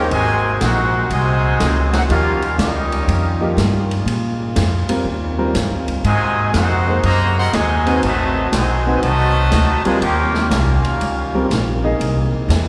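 From 0.0 s, a clear, tight trumpet section carries the melody over a nasal, straight-muted trombone section's second line, a warm baby grand piano's short-sustained accompaniment and a close-miked, brilliant trombone section holding background chords, as a woody pizzicato upright bass and a distant, rolled-off big-band drum kit on hi-hat, ride and snare drive this energetic 121 BPM big band swing fragment through Ab9, Adim7 and Eb9 harmonies in a wet church reverb, the trumpets and muted trombones stopping at 11.5 s, the piano at 12.5 s, and the rest ringing on to 12.7 s.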